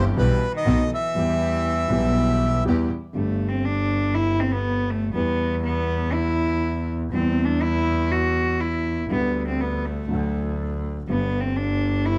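A rich cello with a nasal, gut-string, period-style tone takes the solo from 3.2 seconds in this dramatic, melancholic rubato tango fragment. It plays over a biting, bowed double bass and a concert grand piano with deep bass and short sustain. At the opening, a reedy, dry bandoneon carries the melody with plate reverb until 2.6 seconds, while an earthy chamber string section adds stabs in the background, all within a dark production with light reverb.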